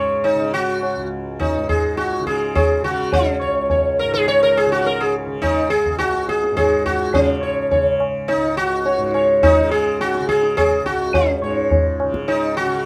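A bright, plectrum-plucked sitar and a softly plucked tanpura sound together from the very start of this short Hindustani classical excerpt, cut from a longer piece, with the tabla joining at 0.3 seconds. The mood is devotional and radiant, moving at 105 BPM in a straight 7/4. Up front, the sitar carries the melody between Db4 and Db5, its buzzing tone haloed by sympathetic strings. Beneath it, the tanpura holds a warm, shimmering drone from Db2 to Db3, sitting well back in the balance. The high-tuned tabla rings out close and dry, while a moderate small-room reverb gives the sound a modest sense of space until the tabla stops at 12.5 seconds and the strings end at 12.9.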